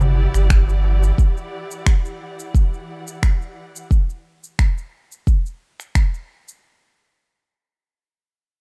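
A lightly swung 88 BPM groove in 4/4 drives this meditative, mystical fragment of organic downtempo in E minor, with layered electronic shaker and finger snaps running throughout and a deep, up-front electronic kick arriving at 0.5 s. A round, mellow sine sub bass and a crisp, metal-shelled darbuka, close and dry in the background, sound only through the first 1.1 seconds, while a lush bowed string section holds an Em7 chord with vibrato and portamento until 3.9 s, both bass and strings carrying sidechain pumping. The rough home-demo mix has a small room ambience and is cut from a longer piece.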